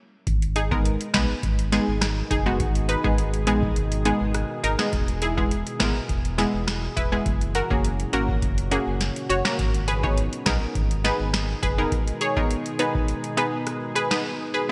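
Dancehall with a tough, sultry mood, this excerpt opens on a booming analog drum machine of deep kick, crisp snare, metallic hats and rim clicks under gated reverb, beside a full sine-and-triangle sub bass with octave. An up-front, detuned sawtooth pluck with chorus joins at 0.6 seconds, and a dark, moody, sidechain-pumped ambient pad of sustained chords arrives at 1.1 seconds, set in a lush hall with bright 1980s-style digital production.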